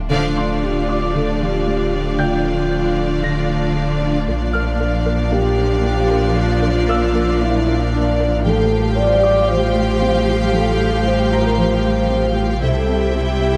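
Cinematic cue in D minor at 115 BPM, vast and futuristic, cut from a longer piece, with a band accent at the start and chords moving from Dm through Bb and Fadd9/A to C. Lush bowed violins carry a second line over expressive viola accompaniment with portamento, while woody cellos join a thick, saturated sub bass in the low end, and a mellow French horn section and an airy, breathy chorused pad hold sustained chords. A squelchy, resonant pluck spins very quiet arpeggios, and a brilliant baby grand with digital delay adds background texture, all set in a scoring-stage reverb.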